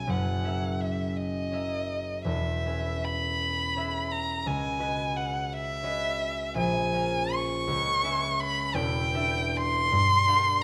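A moderate recital-hall reverb surrounds this short, dreamy and pastoral passage, cut from a longer impressionist piece for violin and harp, with both players close up front. In a rubato 6/8 at about 55 BPM counted in dotted quarters, a single rich bowed violin sings the melody with vibrato, soft attacks and expressive portamento, while a ringing, fingerpicked concert harp supplies the accompaniment across its deep low range and up into the middle. The harmony drifts through colorful chords, opening on F#13 and passing C#m11 before sliding through a chain of minor sevenths to Gm7 near 9.9 seconds.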